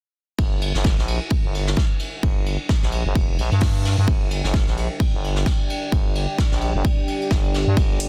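A dense, heavily limited modern master with little reverb carries this bouncy, aggressive bass house clip in G minor at 130 BPM, swung 16ths, cut from a longer piece. A punchy, up-front electronic kick and a thick, growling FM bass with sidechain pumping drive it from 0.4 seconds, under a quieter, smooth vintage brush kit of dark cymbals, hi-hat and a medium-tuned snare with a rolled-off top. A deep, moody sawtooth pad with chorus and its own reverb pumps in at 2.0 seconds, and a metallic electronic hi-hat arrives only at 8.0 seconds.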